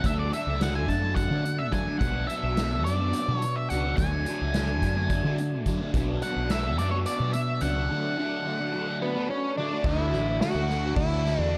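An echo-heavy, lightly reverberant mix in a small room carries this dark, mysterious psychedelic rock excerpt at 214 BPM in 7/8, where an up-front octave-fuzz lead guitar solos through dub echo over a picked, double-tracked overdriven semi-hollow guitar riff colored by phaser and echo, a round fretless bass, and a very quiet, flute-like tonewheel organ with key click and slow rotary swirl. A distant soft-mallet drum kit with dark cymbals and a punchy kick adds a fill at 1.3 seconds, while bright, high-tuned congas played with soft hands sit far back until 7.5 seconds. The harmony moves between D and B minor before settling on Dadd9 at 9.9 seconds as the solo ends.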